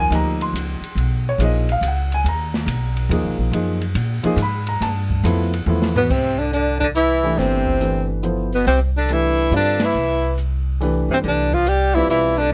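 A baby grand piano and woody upright bass open this searching modal jazz waltz together, the piano intimate and up front with its action noise audible, the plucked bass steel-strung and close. An acoustic drum kit joins almost at once with a dark, smooth sound in a small room: rolled-off cymbals, a medium-tuned snare and a boomy kick, set back beneath the others under an eighth-note swing. Rich major-ninth harmonies drift from Abmaj9 to Bmaj9, then a G13 leads into a drum fill that ushers in two tenor saxophones at 6.0 seconds as the music settles on Cmaj9. The lead tenor carries the melody with a warm, close-miked tone and vibrato, while a second, breathy tenor with a vintage, clear edge sits an octave lower. The band hits a shared accent at 9.7 seconds, and the dry, detailed sound keeps every part present in this open-ended passage from a longer piece.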